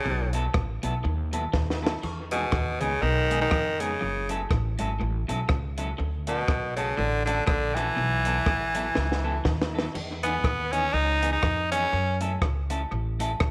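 A raspy tenor saxophone leads this joyful, bouncy ska cut, its gritty, forceful pop-style solo sitting up front with light vibrato until it drops out at 12.2 seconds. Underneath, at 121 BPM in 4/4 with a swung eighth-note feel in E major, a woody pizzicato upright bass on steel strings anchors the low end, while a compact cocktail drum kit, dark and smooth with a high-tuned snare, tight kick, rim clicks and splash and crash cymbals, carries a touch of tape echo. Two clean, picked electric guitars fill the middle: one plays a low riff until 9.6 seconds, and the other, bright, twangy and compressed, adds very quiet accompaniment with tape echo. Drum fills mark the passage, and the harmony moves through B7sus4, Emaj7, F#m7 and Dmaj7 before the opening section repeats at 9.9 seconds. A moderate echo chamber reverb and small room ambience give the piece, cut from a longer recording, an intimate, lively sound.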